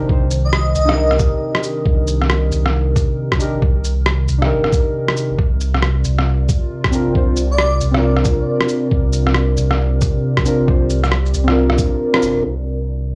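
A swung 136 BPM future garage groove of a thumpy, muffled electronic kick and pitched-down electronic cabasa, shaker and rim click sets a melancholic, wistful C minor mood, as a round sine sub bass, a warbling, detuned tape-like pad and muted felt-like synth keys with tape echo all pump with sidechain, while an airy, dreamy lead with vibrato offers brief notes at 0.4 and 7.5 seconds over chords moving from Cm7 to Bbadd9, the whole carrying a gritty cassette-tape character before a band accent at 12.1 seconds.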